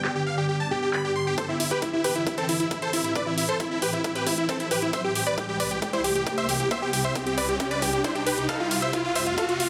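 Uplifting trance at 135 BPM in A minor, emotional and driving, this cut-off snippet puts a huge, euphoric detuned supersaw lead up front with dub echo and sidechain pumping over a shimmering, ethereal pad with chorus, phaser and its own reverb, metallic-hatted big-room drums with handclaps and overdrive, a brief soft felt-muted upright piano note with audible action noise from 0.7 to 1.3 s, then a catchy, very quiet plucky unison lead, a punchy overdriven kick from 1.4 s and an electronic riser from 3.2 s through a build-up that ends in a drum fill at 8.5 s, all moving from G to Am7, C and F in huge ambient reverb under a dense, heavily limited master.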